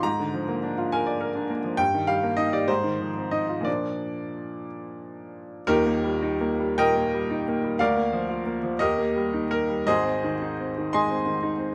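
In a flexible, rubato 6/8 lilt of roughly 53-69 BPM counted in dotted quarters, this brief cut from a longer romantic character piece for solo piano unfolds in Eb major with a hopeful, lyrical mood. A clear baby grand spans from Eb1 up to C6, its intimate, natural tone sitting up front and close enough that the action noise of the instrument is audible. Little reverb colors the detailed sound, and a new phrase begins at 5.7 seconds, settling onto Eb before turning toward Ab at 9.9 seconds.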